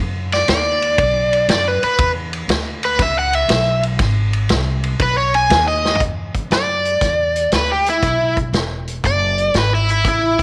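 A bright, overdriven electric guitar sits up front in this swaggering, soulful electric blues shuffle, its picked solo carrying a slapback echo through the opening six seconds. The woody, growly upright bass, plucked pizzicato with a thumpy bottom, sounds first, and the guitar and drums join at 0.3 seconds. The vintage kit is also up front, with a tight kick, a medium-tuned snare, dark cymbals and a gritty, saturated, rolled-off top across hi-hat, ride and toms. A drum fill at 5.8 seconds leads into a new passage at 6.0 seconds. The harmony moves between B and E7 over a swung 4/4 groove. The studio ambience adds light reverb to this excerpt, which is cut from a longer piece.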